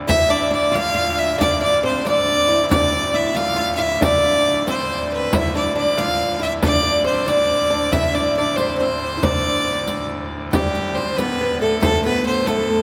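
A steady 6/8 pulse at 92 BPM drives this ancient, mysterious medieval dance in D dorian, where a biting, up-front fiddle carries the melody with light vibrato over a woody, fretless oud second line, a brassy pipe-organ trumpet-stop drone in the background, a deep frame drum played with soft hands and a dry riq with sparkling jingles, all bathed in a cavernous cathedral reverb, with a brief second section arriving at 10.5 seconds in this cut from a longer piece.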